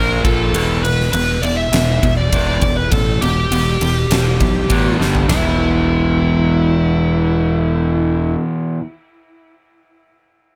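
A light reverb sits over this short, heavy and menacing hard rock fragment, where a double-tracked, hollow-body overdriven semi-hollow guitar drives the riff and a growly, fuzzed fingered electric bass punches beneath it. A bluesy lead guitar carries the melody with a distorted, warm bite, while a huge arena drum kit with a fat snare, punchy kick, bright cymbals, ride and toms plays from 0.2 seconds. The drums land a fill at 5.0 seconds and stop at 5.4 seconds, leaving the guitars and bass to ring on through the closing section.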